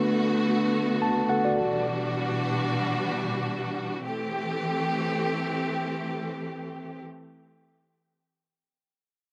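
A mellow tine electric piano, treated with analog delay, opens this hypnotic, deep amapiano excerpt alongside a lush bowed string section, moving from Bm7 to Em9/B before the piano drops out at 1.9 s. The studio strings carry on alone with expressive vibrato and a smooth top, settling onto Am7 at 4.0 s and sustaining until 7.0 s. Both parts sit up front in an echo-heavy mix bathed in moderate spring reverb.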